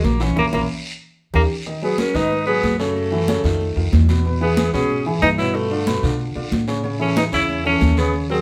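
Driving and sultry, this Afro-Cuban jazz fragment opens on a band accent from 0.4 seconds, capped by a fill, before moving through a chain of colorful chords. An up-front tenor saxophone with light vibrato and a vintage glow carries the melody over an intimate baby grand piano with audible action noise, a woody, thumpy pizzicato upright bass on gut strings, ringing high-tuned congas struck with hard hands in the background, and a raspy guiro. From 1.8 seconds a breathy, hollow metal flute adds a distant second line with tongued chiff, while the band plays together in one room with a wet studio reverb.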